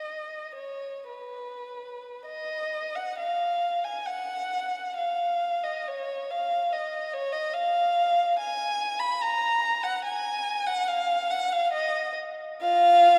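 Yearning and meditative, this short classical fragment for unaccompanied violin is cut from a longer piece and lasts 13.2 seconds. A single bowed violin carries the whole solo in a free, expressive rubato, loosely in 3/4 with the pulse drifting between 44 and 74 BPM, tuned to A4 = 438 Hz. Its tone is dark and woody, softened by sul tasto bowing and colored by vibrato, and it ranges from F4 up to Cb6. The player sits up front, yet a moderate church reverb with a 3.3-second decay surrounds the instrument with the resonance of a church or concert hall. A brief opening phrase gives way at 2.2 seconds to a longer statement of the same material, deepening the searching, inward mood.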